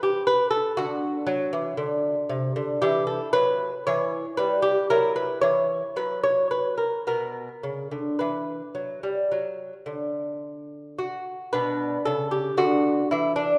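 Classical, baroque-style dance for solo lute in B minor, played with a rubato feel at roughly 53-60 BPM, introspective and solemn in mood. The fingerpicked lute sits up front, its nylon double strings, some doubled at the octave, giving a bright, delicate tone across a range from B2 to C#5, while harmonies move from D through Em and F#7/E to Bm. A moderate scoring-stage reverb of 1.8 seconds surrounds the instrument, and this fragment of a longer piece shifts into a new section at 11.5 seconds before breaking off at 13.6 seconds.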